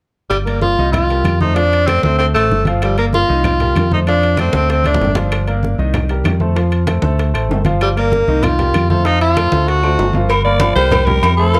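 Salsa with a passionate, driving feel, this short excerpt sets a clear, vibrato-laden tenor saxophone with tape echo over a dark, round fingered electric bass, an intimate grand piano with audible action noise, ringing low congas, tight high bongos and cowbell, metal-shell timbales with agogo bells and woody, band-limited claves under light reverb, before a raspy, gritty alto saxophone with scooped notes takes over at 10.3 seconds.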